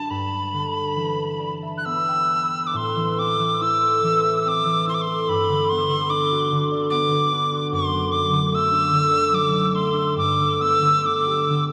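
A metal mid whistle and a concert harp begin together, opening a slow Celtic air in three-time that moves with a free, rubato pulse and a longing, mournful mood. The whistle carries the melody in its upper register, its airy tone marked by a crisp, chiffy attack and expressive vibrato. Beneath it, the acoustic harp supplies thumb-plucked accompaniment across a broad range, its ringing notes sitting up front with a warm glow. The harp steps forward with a fill from 1.0 to 2.7 seconds, just before the harmony moves through A minor and G major seventh on its way back to G. A huge, wet reverb places the music in a vast, echoing space, letting each phrase hang in the air. The passage is cut from a longer piece.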